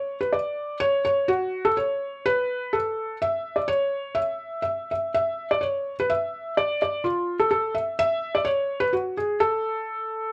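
A felt-muted upright piano plays alone and up front in this festive, jolly slice of alpine folk, rubato in 3/4 at 126 BPM in A major, tuned to A4 = 441 Hz, its soft, mellow, intimate tone sitting in the F4 to E5 range with audible action noise under light reverb, cut from a longer piece and lasting 10.3 seconds.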